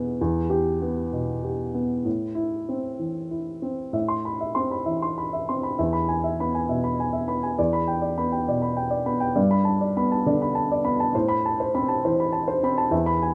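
Neoclassical minimalist piano in A minor, this intimate and reflective passage moves in 6/8 at 66 BPM, counted in dotted quarters, with a rubato feel that lets the time breathe. A single upright piano carries the whole piece, ranging from E2 up to C6, and its woody, natural tone sits up front with a short sustain. Light reverb gives the instrument a modest sense of space while keeping it close and personal. The harmony drifts from Em to Am, then through Amadd9, E, Em7 and Gadd9 before settling back on Amadd9 at 11.1 seconds, the added ninths lending a gentle, open colour. The opening phrase returns at 3.9 seconds, and the recording, cut from a longer piece, ends at 13.3 seconds.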